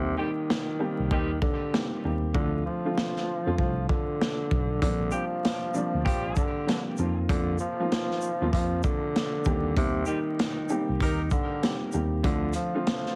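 Boom-bap hip-hop with a confident, soulful mood at 97 BPM, swung on the 16ths, where a growling, breathy tenor saxophone carries the jazz-style melody up front with vibrato and scooped notes over a dark, woody upright piano and a worn, slightly out-of-tune tine electric piano playing the bass line. A crunchy, gritty and saturated breakbeat kit with a tight kick and a medium-tuned snare enters at 0.5 seconds, and a tight horn section doubled in octaves adds stabs treated with tape echo, first at 0.2 seconds and again from 5.1 seconds. The whole short clip sounds heavily compressed and radio-like under light reverb and vinyl crackle, its chords moving between Eb6, Dm7, Bb69 and F7sus4.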